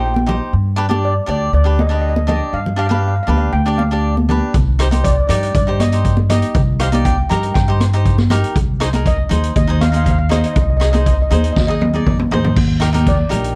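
A shimmering, metallic steel pan carries the melody in this festive, carefree calypso excerpt, struck with hard rubber sticks and captured close, dry and full. A crisp, picked acoustic cavaquinho supplies the chords, while a woody, thumpy upright bass on gut strings sits up front in the mix. Bright, high-tuned congas played with hard hands add a compressed, saturated snap. A street-band drum kit joins at 4.5 seconds with a small-room sound, a high-tuned snare, a boomy kick and dark cymbals, and plays a fill from 11.6 seconds. At a straight 120 BPM in 4/4, the harmony moves through Eb, G7, Cm and Ab/C before returning to Eb, all in a dark production with little reverb.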